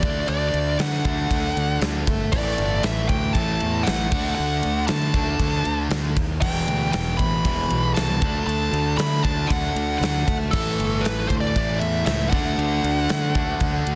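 A straight 4/4 hard rock groove, heavy and menacing, is driven by a gated 80s drum kit with a tight kick, medium-tuned snare and bright cymbals up front, together with a growly fuzz fingered electric bass, a distorted electric guitar riff alongside an overdriven hollow-body guitar sitting in the background, and a nasal lead guitar with a parked wah carrying the melody through plate reverb and analog delay over a D, A5 and Em progression, in a dense, heavily limited 14-second excerpt cut from a longer piece.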